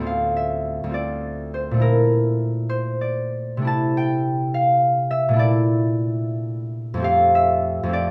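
Set in 6/8 with a free, rubato feel, this brief classical passage moves at roughly 59 to 72 beats per minute, counted in dotted quarters. A solo concert harp carries the whole piece, fingerpicked, warm and ringing, sitting up front in a light reverb. Its range spans from a low D2 up to A5, giving the gentle D minor music both depth and a warm upper register. The harmony drifts from Dm7 through Bbmaj7#11 and C69, returns to Bbmaj7#11, and settles on F69 at 7.1 seconds, lending the music a mysterious colour. The 8.1-second passage is cut from a longer piece.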